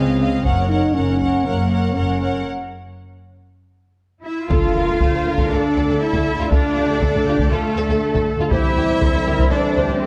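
A dark production with moderate scoring-stage reverb frames this heroic, dramatic cut from a longer epic orchestral film score in a straight four-four. Bowed string sections carry it throughout: a focused violin section takes the melody over a second, more distant violin line, a clear, intense viola section accompanies, and an up-front cello section joins an expressive double bass section, whose playing features portamento, on the bass. A mellow French horn section holds sustained chords in the background from the start, while close, dry taiko drums with heavy sticks strike briefly from 0.4 seconds over a Gb chord before a break at 2.5 seconds. At 4.5 seconds the taiko ensemble returns, a tight trombone section adds sustained chords in the background, and a huge, very quiet impact sounds beneath as the harmony shifts to a new chord. Near the close the chords move again, with the string sections' vibrato lending a lush sheen.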